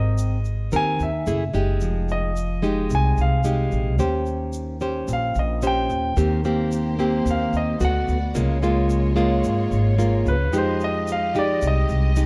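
A straight 4/4 bossa nova groove at 110 BPM in F minor carries this wistful, intimate excerpt: a grainy, dry egg shaker and a woody, thumpy pizzicato upright bass sit under fingerpicked classical nylon-string guitar while a clear, polished concert grand piano takes the solo melody with audible action noise and long sustain, and a soft-attack bowed string section with vibrato joins on sustained chords at 6.2 seconds, all set in a dark production with light reverb.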